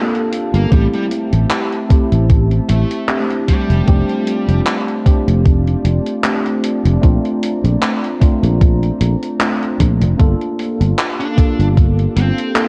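Heard through cassette-tape grain with light reverb and a digital ambience, this hazy, melancholic vaporwave fragment drifts at 76 BPM in a gently swung 4/4, moving through G dorian on chords from Gm9 through Am7, F6 and Bbmaj9. A clean tine electric piano, colored by analog chorus and delay, carries the accompaniment up front, while a dark, detuned, warbling tape-like pad with slow attack and long release sits in the background. A gated 80s drum machine with handclaps and hi-hat enters almost at once, soon joined by a growly, round fretless bass and a thumpy electronic kick that anchor the low end, and a smooth overdriven lead guitar with analog delay sings its picked melody from 0.5 to 4.6 seconds before returning at 11.2 seconds.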